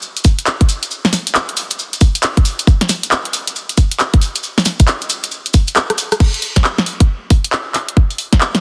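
A tight, tape-warm electronic kick sits up front in this bouncy, late-night UK garage fragment at 136 BPM, its 16ths swung at 64% in 4/4, alongside a layered garage kit whose cracking snare, handclaps, hi-hat, rim click and crash cymbal share that forward placement. Grainy, mellow maracas sit in the background as the groove drops in, and the kick falls away for a drum fill from 5.8 to 6.2 seconds, when the maracas end and a new section begins. Light reverb and digital ambience frame a dense, heavily limited modern master.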